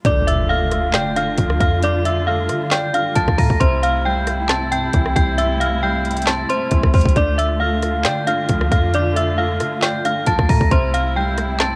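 Eerie and brooding, this short trap passage sits in a half-time feel, cut from a longer piece and carried by a hazy cassette-tape character with light reverb. An electronic impact opens it during the first 1.8 seconds, as a deep, boomy 808-style bass with a clean sine tone and fast, decaying attack anchors the low end. The electronic trap kit sits up front, pairing a hard-clipped kick and woody snare with metallic hi-hats, handclaps and rim clicks. Above it, a bright, inharmonic FM bell carries the melody, its ringing tone and long release thickened by chorus, a low-pass filter and analog delay. Beneath the bell, a felt-muted upright piano adds soft, intimate accompaniment with audible action noise, while a dark symphonic string section holds lush, bowed chords with expressive vibrato. The harmony alternates between Dm and C6 throughout.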